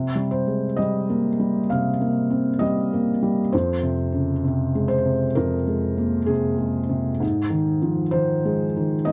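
A dark, intimate recording with light reverb carries a solo felt-muted upright piano, soft and boxy with audible action noise, playing an unhurried rubato neoclassical minimalist passage from F2 to F5 whose hopeful mood moves through Cm7, Fm and Ab6 across this brief cut from a longer piece.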